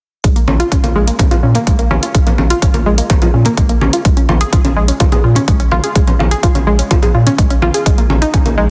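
An up-front analog pluck carries this driving, emotional progressive house excerpt, spinning arpeggios between Ab3 and Ab4 with a detuned, wave-folded sawtooth bite, a noise layer, chorus, dub echo and sidechain pumping. Beneath it, a round analog bass holds Bb1 to Bb2 with a mellow, sine-like depth, thickened by tube saturation and breathing with the same pumping. The punchy, layered electronic kick sits prominently at the front at 126 BPM in a straight 4/4, while an electronic hi-hat and bright, band-limited, vintage-sounding congas struck with hard hands add percussive detail, both ducking under sidechain pumping. Everything begins at 0.2 seconds except the congas, which join at 0.5 seconds, and the harmony rests on Bbm7 in Bb minor before shifting to a rootless Eb7 voicing over Bb at 7.9 seconds. Light reverb and a dense, heavily limited modern master keep this fragment of a longer piece tight and forceful.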